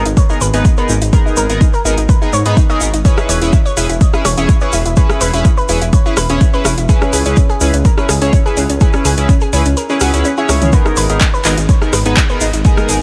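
A dry progressive house excerpt at 125 BPM in G# minor, driving and expansive, where an up-front overdriven deep kick anchors a rumbling, detuned saw bass that pumps beneath round, chorused analog pluck arpeggios and glossy pulse-width-modulated polysynth stabs, with metallic overdriven hats, handclaps, rim clicks, toms and a grainy vintage tube shaker filling out the groove over G#madd9, E6 and C#m7 chords, until the kick drops out at 9.8 seconds and a drum fill at 10.5 seconds leads back to G#madd9 at 10.7 seconds.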